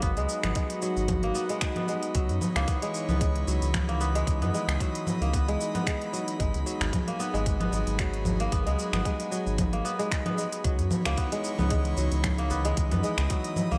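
Organic downtempo with a warm, hypnotic mood, built on an airy, breathy pad holding sustained chords with chorus and sidechain pumping, a ringing, fingerpicked kora playing up-front arpeggios through delay and slapback echo, a round, dark analog bass that pumps along with the pad, a tight electronic kick, and a crisp-hatted organic electronic kit of congas, finger snaps, hi-hat and shaker, while a deep, very quiet udu joins at 6.5 seconds, all set in a lush hall reverb with a big arena sound in this short cut from a longer piece.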